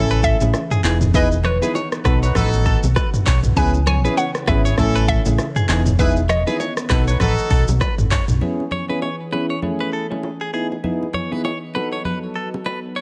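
A round, punchy hollow-body electric bass sits up front in this breezy, sunny afrobeats piece, cut from a longer work and moving at 99 BPM in 4/4 with a swung sixteenth feel in E major. Beside it, a deep house drum kit of kick, handclaps, hi-hat, rim click, shaker and toms carries a layered electronic punch and a gritty 12-bit sampler edge, while ringing bongos and congas played with soft hands sit in the background. A hollow, bouncy square-wave pluck with chorus and digital delay carries the melody, joined by a mellow, distant horn section playing a second line, and a twangy, direct-recorded clean guitar riff adds its own delay. Gentle electric-piano-like synth keys with chorus and tremolo provide accompaniment underneath, and a thick, warbling unison pad holds sustained chords with a sidechain pumping motion. The chords cycle through Amaj7, Emaj7, B7 and C#m7 under light reverb, and after the bass and drums stop at 8.4 seconds, the keys, pad, guitar and hand percussion carry on, with the pad and guitar lasting to the end at 13.0 seconds.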